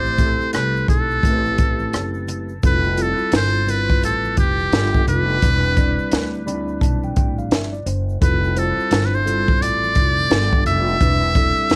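A lightly reverberant home recording on cassette carries this cool, smoky jazz-hop excerpt at 86 BPM with a swung 4/4 feel. A buzzy, breathy trumpet with metal mute leads up front with light vibrato and analog delay, while a mellow tine electric piano accompanies and adds a fill from 6.1 to 8.2 seconds. A woody, thumpy pizzicato upright bass holds the low end, a compact cocktail drum kit with a high-tuned snare and punchy kick plays dry, and very quiet congas and tube shaker sit underneath, over chords moving through Am9, Fmaj7, G7 and Cmaj9/E.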